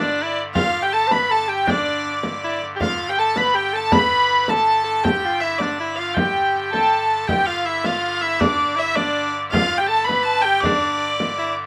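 Lightly reverberant and cut from a longer piece, this ancient, festive medieval dance in 6/8 at 107 BPM in G mixolydian sets a clear, smooth wheel-bowed hurdy-gurdy melody up front over an edgy, punchy soprano saxophone second line with jazz-style vibrato and a hollow clarinet-stop pipe organ drone, while a deep frame drum played with soft hands enters at 0.6 s and the opening phrase returns at 7.3 s.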